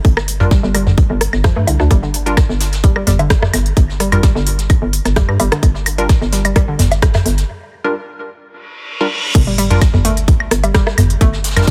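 Set in a digital ambience, this cool, sparse minimal techno excerpt in G minor at 129 BPM rides a tight, up-front electronic kick and a hollow, bouncy FM bass with sidechain pumping, joined by a garage drum kit with crisp hats, a faint rolled-off brush kit, and a booming, dry analog drum machine whose claves, rim clicks, toms and woodblock carry tape echo, while a bright, detuned wavetable chord stab and a square-wave pluck with chorus, phaser, 12-bit grit and tape echo fill the top until a break at 7.5 seconds, after which a reverse cymbal and sub drop enter at 8.7 seconds and land on the drop at 9.3 seconds.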